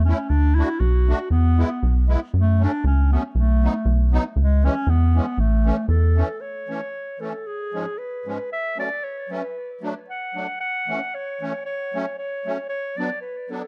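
Jolly and festive, this short alpine folk excerpt moves at 115 BPM in a straight 2/4, in A major, with a classical-style clarinet carrying the solo melody up front, its tone touched by tape echo. A reedy, shimmering musette accordion plays accompaniment throughout, while a rubbery, hollow square-wave bass with a fast, plucky attack bounces up front until 6.2 seconds. The production is dark and intimate with little reverb, and the harmony travels from D through F#m and C#m7 to A before a second section moves through C#7/G# and ends on Bm.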